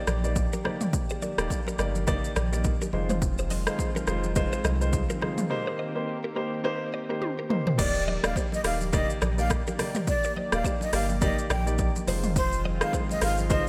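Afrobeats with a breezy, joyful lift, where a punchy, overdriven deep house kit and a round sine sub bass sit up front under short-sustain grand piano, a detuned sawtooth pad with chorus, a bright clean picked electric guitar riff with chorus and delay, and thin-skinned vintage congas, all bathed in lush hall reverb and glossy 1980s-style digital sheen, until a drum fill ushers in a breathy, vibrato-laden silver concert flute melody with delay at 7.8 seconds.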